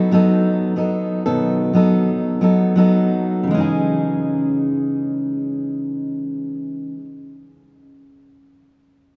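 Tender and wistful, this short pop excerpt features a single fingerpicked steel-string acoustic guitar playing alone from start to finish, in 4/4 with a lightly swung sixteenth-note feel. The dreadnought guitar sounds full-bodied and up front, its range spanning from B2 up to A4. Over the first 3.5 seconds the pace slows as the guitar rests on a B7 chord, then a new section begins at 3.5 seconds on C#madd9. A deep cathedral reverb with a long 4.2-second decay surrounds the instrument, giving the sense of a church or concert hall. Cut from a longer piece, the passage lasts just over seven seconds.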